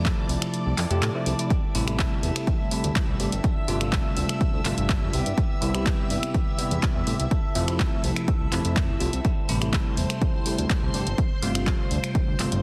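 A punchy, overdriven electronic kick sits up front in this funky, joyful slice of filtered disco house at 124 BPM in C major, briefly dropping out between 0.5 and 1.5 seconds while a punchy analog drum machine keeps finger snaps, handclaps and pumping hi-hats going. A fat, tube-saturated sawtooth bass with a filter sweep anchors chords moving from Fmaj7 through Am7, G9sus4 and Cmaj7, beneath a bell-like tine electric piano carrying phaser and 12-bit sampler grit, lush chorused string-machine chords, and a slightly broken-up picked guitar riff in the background that stops at 11.2 seconds. The mix is dry and dense, heavily limited, with sidechain pumping on the bass, keys, strings and guitar.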